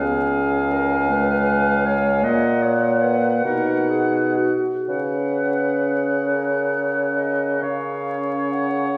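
Classical slow romantic movement for wind quintet in F# major, tender and serene, unfolding in a rubato 12/8 at 40-54 BPM over C#, F#/A# and F#/C# harmonies, with an airy, straight-toned silver flute of crisp attack carrying the melody from a distance, a clear oboe with light vibrato as second line, a mellow, roomy clarinet and a dark French horn with vibrato in accompaniment, and an up-front warm bassoon anchoring the bass, the whole ensemble heard from further back in a reverberant recital hall with vinyl crackle and a softened top end.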